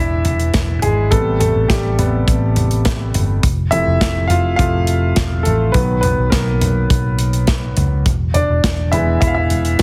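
A clear, intimate concert grand piano carries this dramatic, driving piano pop fragment from the start, its audible action noise, deep bass and long sustain placed up front as it moves through E, Am7, F and B before returning to E. A dark, round, foam-muted fingered electric bass plays beneath it, and at 0.2 s a modern studio drum kit joins with a punchy kick, a medium-tuned snare, hi-hat and toms. The whole mix sits in a small room and is heavily compressed, giving it a radio-like sound.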